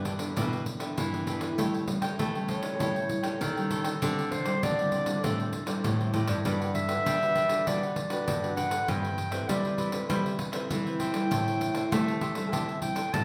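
Lively yet bittersweet, this samba and choro excerpt at 99 BPM in straight 4/4 features a soft-attack classical clarinet soloing across the whole 13.2 seconds over crisp picked cavaquinho, a small fingerpicked nylon-string guitar, a full-bodied deep nylon-string guitar carrying the bass, and a jingly, up-front pandeiro entering at 0.1 seconds, the band playing live together in a large studio with a wet reverb as the chords move from Em7/G through A7, D9sus4, Gmaj7 and Cmaj7/G to Am7.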